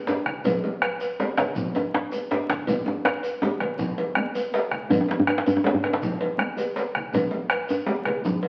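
West African traditional drum ensemble in 12/8 at 108 BPM, powerful and earthy, heard as a short cut from a longer piece that sounds like a very old 78 rpm record with vinyl crackle and a wet, large studio reverb. A metallic cowbell, a grainy, mellow shekere and two deep djembes, one struck with hard hands and the other played softly and close up front, start at 0.1 seconds. A dark, dry bombo and thick-skinned, low-tuned congas played distant with soft hands join at 0.3 seconds, all continuing through to about 8.5 seconds.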